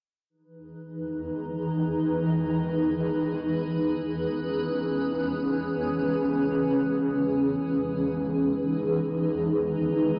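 Hip hop in free time, hazy and melancholic, this short excerpt is a lone granular cloud pad entering at 0.8 seconds, dark, blurred and full-bodied with detuned unison sine tones, a moving notch, slow attack and long release, set up front with built-in reverb and tape echo over a gritty, saturated hardware sound in light reverb as the harmony drifts from Emaj7 to C#m7 and back to Emaj7.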